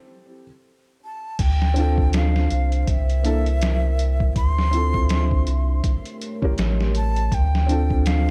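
Cinematic and brooding, this swung trip hop excerpt opens with a soft felt-muted upright piano carrying audible action noise and tremolo, joined at 1.0 seconds by a breathy jazz flute with vibrato and tape echo, then at 1.4 seconds by a round sine sub bass and a thumpy, compressed, overdriven sampler-style drum kit up front, before a detuned analog pad with chorus settles in beneath it all at 2.0 seconds in a dry, dark mix.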